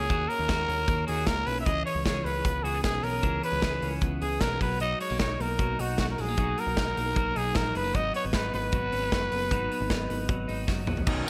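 Jangly indie pop at 153 BPM with a breezy, youthful mood, cut from a longer piece, where a raspy, growling trumpet carries the melody with slapback echo over twangy twelve-string electric guitar arpeggios bathed in lush chorus, a dark, round picked electric bass and a big rock drum kit with a punchy kick, bright cymbals and gated reverb, all moving through D#m7, C#m7, Bmaj7 and G#m7 in light reverb until a drum fill at 10.7 seconds leads to a crunchy overdriven guitar entering at 11.1 seconds.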